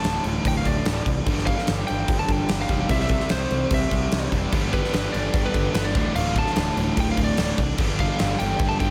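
Heavy and aggressive, this short hard rock cut from a longer piece drives along at 147 BPM in a straight 4/4, moving through D5, G5, C, G, Dm and G. A huge acoustic arena drum kit sits up front with a punchy kick, a medium-tuned snare, bright crash cymbals and a pumping hall-like room sound. Beneath it, a fuzz-soaked picked bass growls with overdriven punch, while two scooped, compressed distorted electric guitars pick out the riff in the background. At 4.5 s a double-tracked high-gain guitar joins the riff, thickening the wall of distortion. Over the top, a lightly driven lead guitar carries the melody with a twangy, slightly broken-up tone and a slapback echo, all set in a small room with light reverb.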